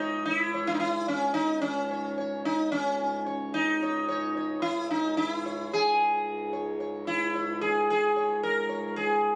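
In a straight four-beat pulse, this solemn, meditative fragment of Hindustani classical music sets an up-front, buzzing sitar melody, shimmering with sympathetic strings and bathed in plate reverb, over a much quieter, reedy and nasal hand-pumped harmonium drone that breathes low beneath it, all captured on a phone in a studio room with moderate ambience and compression.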